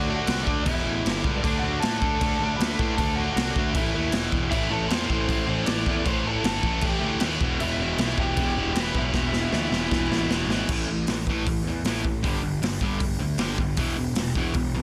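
Punk rock at 156 BPM in a straight 4/4, this aggressive, raw cut from a longer piece opens with its lead guitar, bass, rhythm guitar and drums all driving from the start. A dark, lo-fi lead guitar through a small cranked amp carries the overdriven melody until about 10.3 seconds, over a bright, scooped and compressed distorted guitar riff sitting up front. Underneath, a fuzz-laden picked bass adds a growly low end, while the raw garage drum kit, heard in a small room with a boomy kick, a medium-tuned snare and a rolled-off, gritty top, pushes crash, hi-hat, kick and snare close to the listener. A second, biting overdriven guitar joins in the background at 4.5 seconds with its own riff, as the chords move through Am and Em. A drum fill starting at 9.1 seconds leads into a new section at 10.7 seconds, where power chords on A, G and E carry the track under light reverb and a dense, heavily limited modern master.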